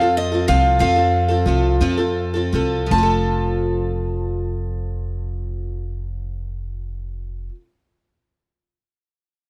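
Warm and gentle, this short folk passage in a straight 6/8 feels like a fragment lifted from a longer piece. A picked acoustic archtop guitar carries the melody high in its range, its fresh strings sounding boxy and bright, with the odd finger squeak. Beneath it, a parlour twelve-string guitar, picked and octave-doubled, supplies a shimmering, bright accompaniment that sits up front in the mix. A pizzicato upright bass with steel strings adds a woody, dark foundation, also placed close and prominent. The music slows down over the opening 2.9 seconds before moving into a new section that runs to the end, and all three parts play throughout. The dry, intimate sound of a close 1970s-style studio recording is framed by a touch of small-room reverb.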